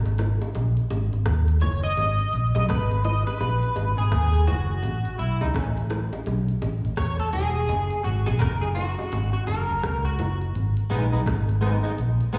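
Laid-back and serious, this roots reggae excerpt in G# minor at 84 BPM with a swung sixteenth feel rides a dark, round, foam-muted fingered bass that sits up front from the start, along with a soft electronic kit of clicky hi-hat, kick and rim click with slapback echo, and tight, high-tuned bongos that stop at 10.4 seconds. A twangy, slightly broken-up electric guitar enters at 1.6 seconds through chorus and tape echo, while a clean electric guitar solo carries the first 10.5 seconds over G#m, A and F# chords before the harmony returns to G#m, the whole performance heard as a live gig through a venue PA with recital-hall reverb.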